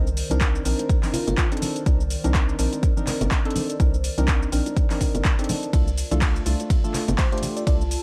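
Deep house at 124 BPM in C dorian, moody and smooth, with a swung sixteenth feel, cut from a longer piece and resting on a Cm9 chord before shifting to Dm at 5.7 seconds. An overdriven electronic kick sits up front alongside a layered kit of cabasa, handclaps, metallic hi-hats and ride cymbal, while acoustic congas and bongos in a small room murmur in the background. A hollow, bouncy FM bass with tube saturation pumps under the sidechain, and a dark, percussive organ stab with chorus, cassette tape colour and tape echo punctuates the groove. Behind them a warbling, nostalgic pad, detuned and lo-fi with chorus and built-in reverb, breathes slowly. A sparkling, bell-like FM electric piano with tape echo drifts in at 0.3 seconds and returns briefly near 7.2 seconds, all over a steady bed of vinyl crackle.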